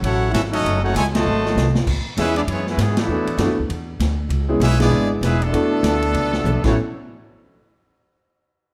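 A moderate large-studio reverb gives this joyful, brassy big-band swing fragment an open, roomy sound. The brilliant trumpet section carries the melody with light vibrato over a clear, close-miked trombone section on the second line, while a woody, thumpy pizzicato upright bass sits up front and a distant drum kit with a boomy kick and rolled-off top keeps the swing. The band hits an accent at 1.1 seconds and the drums fill soon after, before a smooth, vintage grand piano joins the accompaniment at 2.2 seconds.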